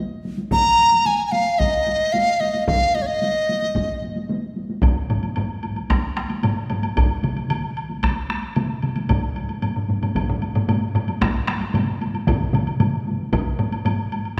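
Set in a wet concert hall reverb, this driving, ceremonial Japanese taiko ensemble excerpt in 4/4 starts at 112 BPM and gradually speeds up, with layered taiko groups struck with hard and heavy sticks (one vintage and band-limited, another up front in a live room), while an airy, buzzing large dizi with vibrato and tongued notes carries an Eb suspended pentatonic melody with slapback echo until 4.0 s, a woody woodblock enters at 4.8 s, and solo taiko drums join at 7.2 s.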